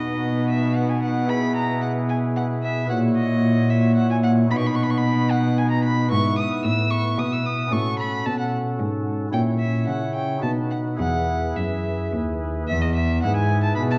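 A gut-string violin with light vibrato sings a radiant, serene melody in this baroque-style sonata movement in 3/4 with a gently rubato feel, over a soft, up-front pipe organ played on flute stops with audible chiff and tremulant and a reedy, period-style bowed cello on the bass line, all set in a wet recital hall reverb in an excerpt cut from a longer piece.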